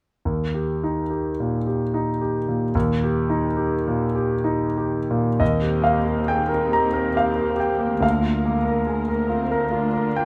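A clear, intimate concert grand piano opens this lyrical, passionate classical passage in Eb major at a rubato 61-75 BPM in 3/4, its up-front melody showing audible action noise and deep bass, until veiled, muted viola and cello sections enter at 5.4 s in the background, the violas lush with vibrato and the cellos dark with a soft attack, all within a moderate stone room reverb as the harmony moves from Eb to Bb/D at 8.0 s in this fragment of a longer piece.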